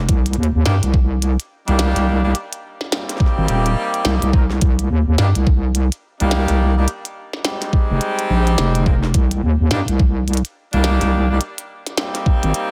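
Glitch hop at 106 BPM in C minor, this gritty, playful excerpt rides a swung sixteenth-note feel from a longer piece. A heavy, saturated wobble bass sits up front from the start, its square-and-sine tone thickened with chorus and overdrive yet still mellow at its core. Beside it, an overdriven, layered electronic kick knocks up front, while a glitchy kit adds clicky hi-hats and a tiny snare that sound re-recorded in a large room, placed lower in the mix. From 0.7 seconds a bright, close-miked horn section plays loose pop-style stabs doubled in octaves, pumping against the sidechain and trailing delay. The chords move through Cm7, a rootless Abmaj7 and Fm7 inside a digital ambience before a break at 12.5 seconds.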